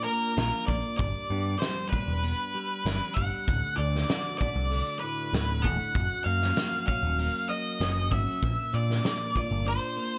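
A small room's light reverb frames this short cut from a longer quiet-loud alternative rock piece, its top end rolled off above 10.4 kHz. At 97 BPM in a straight 4/4, tuned slightly low to A4 = 436 Hz, the mood is restless and cathartic. A dark, up-front octave-fuzz lead guitar carries the melody between Bb4 and F#5, while a bright, twangy twelve-string electric guitar plays clean, compressed arpeggios through analog chorus and tape echo. From 0.4 s a growly, overdriven picked bass digs down to D1, and a loose acoustic drum kit with a fat snare, punchy kick and hi-hat sits in a pumping studio room. The chords move from Bb through G, D and F# before returning to Bb at 8.4 s, with bass and drums dropping out at 9.8 s as the guitars ring on to 10.2 s.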